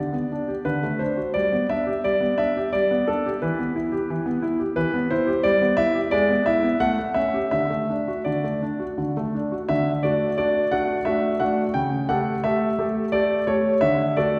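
A classical-period piano sonatina in 3/4 at 87 BPM, graceful and cheerful, played by a solo concert grand piano that sounds clear, intimate and up front, with deep bass and audible action noise. Starting in G major, the harmony moves through E minor before shifting to D major from 5.4 s, where a chromatic turn leads toward A7 and then D, and a new section begins at 9.7 s. The piano rings in a wet recital hall reverb, and this passage is cut from a longer piece.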